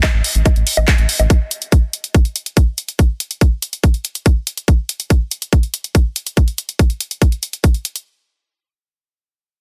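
A straight 4/4 pulse at 142 BPM drives this alien, hypnotic psychedelic trance, with a tight electronic kick and a layered drum kit of bongos, handclaps and bright hi-hats, both overdriven and up front, while a round, deep analog bass on A1 appears briefly with a filter sweep until 1.3 seconds, all in a dry, dense, heavily limited modern master.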